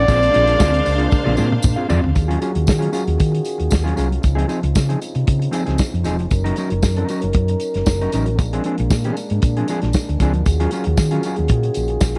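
Driving and danceable, this disco excerpt opens with a warm, close-miked flugelhorn and distant, lush bowed strings that drop out within the first 2.1 seconds. A drum fill from 1.1 seconds punctuates a groove of round, amped hollow-body bass, a muffled lo-fi soul kit, and jingly tambourine under dark, clean fingered electric guitar and a mellow French horn section sustaining chords through Ebm11 and Dbmaj9, all in a small, dark room.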